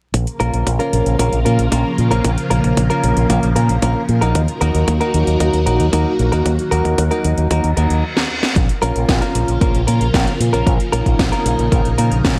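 Bittersweet and nostalgic, this italo disco excerpt at 114 BPM in Bb minor moves from Bbm to Ebm over a swirling, warbling phased string machine, an up-front fingered bass with an envelope filter, tube saturation and digital delay, a punchy, tape-warm electronic kick alongside a house kit of cracking snare and metallic hats in gated reverb, and bright, clean guitar stabs entering at 0.4 s, before a reverse cymbal at 7.7 s and a brief stop with a drum fill lead into the next section at 8.6 s, the mix sitting in light reverb with vinyl crackle.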